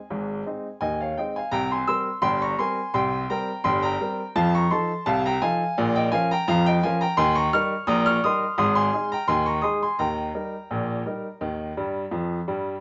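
A woody, vintage-toned upright piano sits up front and plays solo through this cheerful, lively ragtime excerpt at a straight 85 BPM in 2/4, tuned slightly flat to A4 = 436 Hz and ranging from G1 to F6, moving through Ab, C5, F7, Bbm and Eb7 changes with long sustain in a small room's moderate reverb and a top end that stops at 7.7 kHz, before a closing fill at 11.8 seconds.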